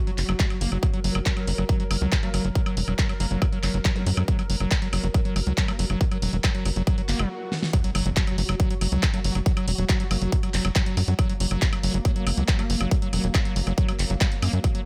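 A straight psychedelic trance groove with an alien mood is driven by a punchy, up-front electronic kick and a big-room dance kit of handclaps, hi-hat, woodblock and a huge snare, under a tight, nasal sequencer bass, a squelchy, gritty acid bass riff with sidechain pumping and digital delay, a mellow, pulsing gated pad in the background, a very quiet, juicy blip pluck, and faint zaps, a swell and an impact, as the music briefly stops at 7.3 seconds before a drum fill and a drop at 7.7 seconds.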